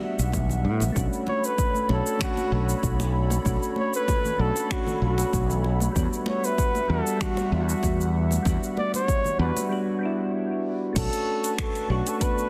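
A mellow, close-miked flugelhorn with light vibrato carries the melody from 1.3 s in this smooth, relaxed sunset chillout excerpt in B minor at 96 BPM with a gentle 16th-note swing, floating over round electric-piano-like synth keys with chorus and digital delay, an airy, breathy detuned pad, a bright fretless electric bass up front, a deep overdriven electronic kick, a deep house kit of metallic hi-hats, finger snaps, shaker and crash, and damped, high-tuned congas in the background that drop out at 9.7 s, all set in a lush hall reverb with a dense, heavily limited modern master as the chords move between Em9 and Bm9.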